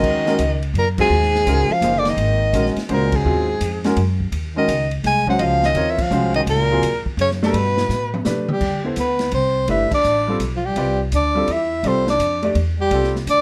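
A dark, lightly reverberant sound frames this searching, hypnotic modal jazz excerpt, swinging in three with band accents along the way. A breathy soprano saxophone with vibrato carries the melody up front alongside a mellow trombone second line with scooped notes, while a clear grand piano with short sustain accompanies over a thumpy, woody pizzicato upright bass and an open jazz kit with dark cymbals and a boomy kick. A drum fill at 7.9 s leads into a new section at 8.6 s, where the harmony settles on a major ninth chord.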